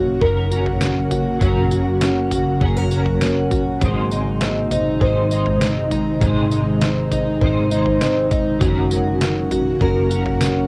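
Over a straight 4/4 pulse from a thumpy, detuned 8-bit drum machine with kick, snare, tambourine and toms, this blissful, ethereal dream pop excerpt layers an up-front, woody fingerpicked twelve-string acoustic guitar shimmering with octave-doubled arpeggios and tape echo, a clean semi-hollow electric guitar with tremolo and chorus, an airy, slow-attack pad of sustained chords, a dark, foam-muted fingered electric bass, and a bright, ringing hard-mallet vibraphone entering in the background at 1.4 seconds, all moving between Gb and Ab chords inside a small, wet booth ambience with the warm character of a home cassette recording.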